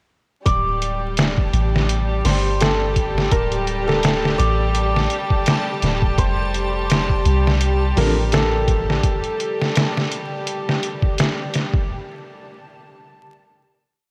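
Santur, a chamber violin section, soft 808-style bass and a sampler-style trip hop drum kit all start together at 0.5 seconds, setting a brooding, dark groove at 84 BPM with a light swing on the sixteenths. The drums are compressed and pitched down, a looped breakbeat with edits, a thumpy kick and medium-tuned snare sitting up front beside a deep, round dub-style bass line that stops at 9.0 seconds. Over this the hammered santur rings out a shimmering, repeating riff melody with tape echo and 12-bit sampler grit, while the violins hold sustained chords played sul tasto with light vibrato, also carrying that vintage grit. From 1.4 seconds a reversed, granular swelling texture holds a bright, detuned high note in the background, thickened by analog chorus and its own reverb, and at 8.0 seconds a felt-muted upright piano adds a brief, echoing chord stab with tremolo and audible action noise. 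The harmony moves from Dsus4 through F6 to Gsus2, and the whole mix is dreamy and soaked in a huge ambient reverb with vinyl crackle.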